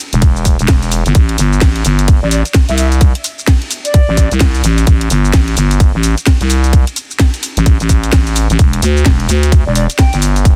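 An aggressive, bouncy slice of bass house cut from a longer piece, moving at 129 BPM in 4/4 with a 61% swing on the sixteenths. A thick, growling FM bass sits up front between E1 and D2, its fast attack and sustained tone pumping under sidechain compression. An up-front, tight electronic kick drives the track, while a garage kit of hi-hat, ride cymbal, shaker and a cracking, overdriven snare supplies the swung groove. A distant, airy silver concert flute carries the melody between D5 and G5, its tongued, vibrato-laden notes roughened by 12-bit sampler grit and trailed by tape echo, first from 2.2 to 4.3 seconds and again briefly near 9.7 seconds. The harmony settles on A minor at 1.1 seconds before shifting to E minor at 8.6 seconds, and the dry, densely limited master keeps the whole mix dense and loud.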